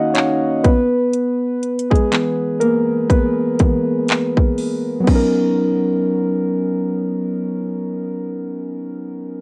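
Heard through light room reverb and cassette tape coloring, this romantic, smooth contemporary R&B excerpt pairs muted, dark, intimate synth keys with chorus against a close trap kit of hard-clipped kick, metallic hats, handclaps and crash carrying 12-bit sampler grit, the drums dropping out at 5.3 s as the keys settle from D#m9 and E onto a Bmaj9 at 5.1 s and ring on to 9.4 s.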